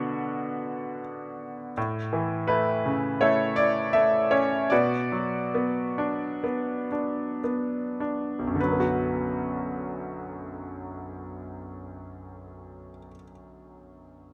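A bright concert grand piano opens alone, playing a cool, moody passage of lyrical classical music with a supple rubato feel in 4/4. Its tone is brilliant yet slightly worn, with a deep bass reaching down low beneath its upper register, and the faint clatter of the action can be heard under the notes. The pace is unhurried, and the music eases back further between 1.8 and 8.6 seconds as the harmony moves away from its home chord and then returns to it. Close, detailed miking places the instrument up front in an intimate, present sound, with only a light touch of reverb around it. The passage is taken from a longer piece, and the piano sounds until 14.3 seconds.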